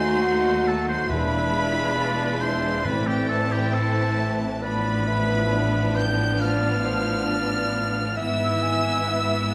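An unhurried 68 BPM pulse in 4/4, stretched by rubato, carries this yearning, solemn passage from a slow romantic orchestral movement, where a lush, vibrato-rich upper violin section sings the melody over a clear oboe, a pure flute and a second violin line, while violas, cellos and a focused bowed double bass section fill in beneath dark, distant French horn chords, round soft-mallet timpani sound from 1.1 to 4.2 seconds, and a moderate scoring-stage reverb frames the harmony as it moves from a diminished seventh through E7b9 to A minor.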